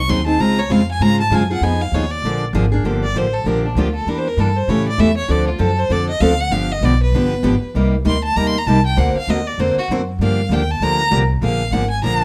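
Swinging and virtuosic, this short excerpt of acoustic string swing in G minor races along at 196 BPM, with a clear, bowed violin soloing in smooth, even vibrato over a woody, thumpy pizzicato upright bass on gut strings and a bright picked steel-string acoustic guitar whose fresh strings and finger squeaks come through, all three up front in moderate studio reverb with a rough home-demo feel as the chords move through jazzy changes such as Dbmaj7, Gm9, G7b9 and D7alt.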